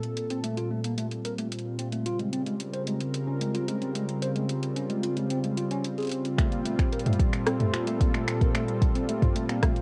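A detuned sawtooth pad sits up front in this short IDM excerpt, holding slow-attack chords that sound smooth and mellow, thickened by chorus and roughened with vintage 12-bit sampler grit. The mood is playful yet wistful, moving at 111 BPM in a straight 4/4, with the harmony shifting from Bbsus2 to Dbmaj7 at 2.1 seconds before returning to Bbsus2. An analog drum machine keeps time throughout with dry finger snaps, metallic hi-hats, rim clicks and toms, dressed in studio reverb. From 0.3 seconds a clean tine electric piano traces arpeggios through a low-pass filter and analog delay, heard as if through built-in speakers. At 6.4 seconds a deep, produced electronic kick drum joins up front for the second section, giving the closing bars more weight. The whole excerpt carries the intimate feel of a home cassette recording with moderate booth ambience.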